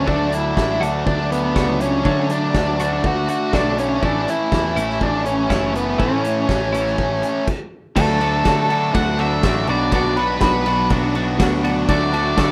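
Indie rock at 122 BPM in D major, upbeat and jangly, cut from a longer piece with a rough home-demo feel and light reverb: a dark, up-front octave-fuzz lead guitar with slapback echo carries the melody over a bright, compressed fuzz guitar riff and a growly, overdriven picked bass. A twangy twelve-string electric guitar with subtle chorus and slapback echo sits in the background, while a loose, roomy, distant drum kit with dark cymbals and a tight kick keeps a straight 4/4. After a brief stop at 7.5 seconds, a very quiet, buzzy vintage combo organ with light vibrato adds sustained chords from 8.0 seconds as the harmony moves from D to B minor.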